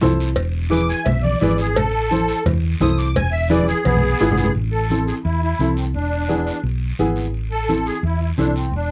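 A driving, danceable cumbia opens with a clear, woody upright piano playing accompaniment over a dark, round hollow-body electric bass that sits punchy and up front, while low-tuned, thick-skinned congas, a raspy guiro and ringing metal-shell timbales with cowbell set the groove at 172 BPM in 4/4. At 0.7 seconds a reedy musette accordion enters with a shimmering, airy tone, taking a solo through the opening half and carrying the melody in A harmonic minor. A drum fill from 3.5 seconds leads into the second section, and the timbales and cowbell drop out at 4.4 seconds as the harmony moves between A minor and E, with an E7 in the later half. The piano's short sustain and smooth vintage character sit alongside the saturated, compressed congas and the band-limited guiro. The sound is a dry, close 1970s-style studio recording with light reverb, cut from a longer piece.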